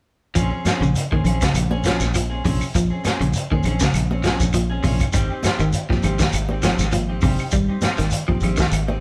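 At 0.4 s a funky, hypnotic afrobeat groove at 100 BPM in Bb dorian starts up in one lightly reverberant room, with a gritty, saturated breakbeat kit up front with a punchy kick and a dark, rolled-off top, a round, foam-muted fingered bass, a slightly broken-up picked guitar playing low arpeggios, a clean guitar adding stabs with spring reverb, a grainy shekere, high-tuned ringing congas in the background, and woody claves joining in the background at 0.7 s, all over a swung sixteenth feel that moves from Bbm9 to Abmaj7 at 5.1 s.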